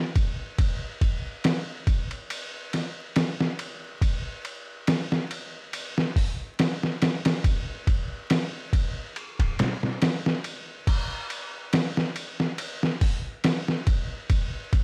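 Vinyl crackle colors this cinematic, melancholic trip hop excerpt as a gritty, pitched-down sampler-style drum kit enters at 0.2 seconds, its thumpy kick, medium-tuned snare, hi-hat, ride and crash cymbals sitting compressed and up front in a slow 70 BPM 4/4 groove with a light 16th-note swing, shifting into a new section at 10.9 seconds before the cut at 14.8 seconds.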